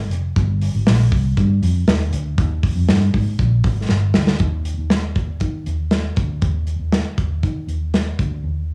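A straight, even four-beat pulse carries this short, breezy slice of jangly indie pop, cut from a longer piece and steeped in a nostalgic mood. A vintage muted fingered electric bass sits up front from the start, its tone dark, round and amped, with a foam-muted thud and a punchy attack. The modern studio drum kit comes in at 0.1 seconds with hi-hat, a punchy kick and a medium-tuned snare. It sounds airy and polished in a small room, with a cassette tape coloring on the kit. A drum fill at 3.9 seconds leads from the opening passage into a second section that runs to 8.4 seconds. The whole recording carries a home-cassette character with light studio reverb.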